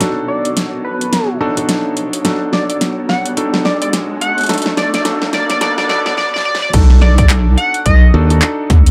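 A heavy, saturated wobble bass lands up front at the drop at 6.7 s alongside a punchy, tape-warm kick in this short cut from a gritty, funky glitch hop track in B minor at 107 BPM with a swung 16th feel. Before that, a filter-swept build-up carries an edgy, tearing sync lead with chorus and dub echo, clear, intimate piano stabs that pump and echo, a cloudy granular pad and riser in the background, and a dubstep kit with huge snare, metallic hats, claps and crash rolling through fills. A bright, growly fingered electric bass slips in briefly at 8.1 s, heard in a small room.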